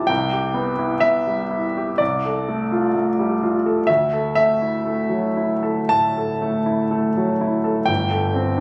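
A clear grand piano plays alone in this hazy, dreamy impressionist classical fragment, its intimate, up-front tone carrying long sustain and audible action noise across a range from G1 to A5. The rubato feel drifts at 54-65 BPM in 4/4, moving through Cmaj7, G11/C and Dadd9 before arriving on Gsus4 at 7.9 seconds. Captured on a phone in the room, the sound is polished with light studio reverb and compression, and the 8.6-second passage is cut from a longer piece.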